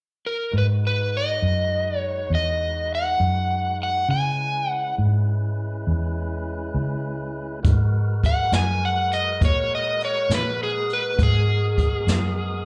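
Brooding and smoky, this slow 12/8 blues, heard live through a club PA, opens with an up-front overdriven slide guitar melody with slapback echo, set over fat, key-clicking tonewheel organ chords spun through a fast rotary speaker and a dark, round, foam-muted fingered electric bass, until distant, roomy brushed drums with a boomy kick enter at 7.6 seconds as the slide guitar moves into a solo.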